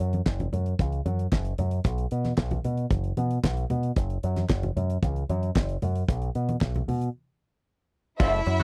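A straight, danceable 4/4 disco groove drives this glamorous fragment of a longer piece, with a damped, fat-snared 70s drum kit and a bright, picked envelope-filtered bass up front, low-tuned congas and crisp group handclaps tucked in the background, and after a break from 7.1 to 8.2 seconds a lush, bowed symphonic string section and a twangy, slightly broken-up wah guitar arriving in a dry, close 1970s-style studio sound.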